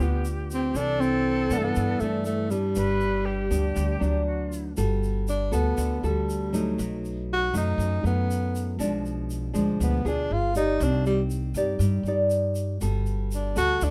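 A light reverb gives this romantic, sophisticated bossa nova excerpt an intimate, polished sound, with the saxophone, guitar and bass placed up front. A breathy tenor saxophone carries the melody in a mellow, jazz-style voice, colored by subtone, light vibrato and scooped notes. Over the opening moments a bright silver concert flute adds an airy second line with vibrato, a crisp attack and a slightly unsteady quality, stopping at 4.7 seconds, and the saxophone then takes a solo from 4.8 seconds to the end. Beneath it, a thumb-plucked nylon-string guitar provides classical-flavored accompaniment, while a woody pizzicato upright bass with steel strings anchors the low end. A grainy, mellow tube shaker sits softly but close in the mix as the harmony moves through rich seventh and ninth chords, including a diminished chord and an altered dominant.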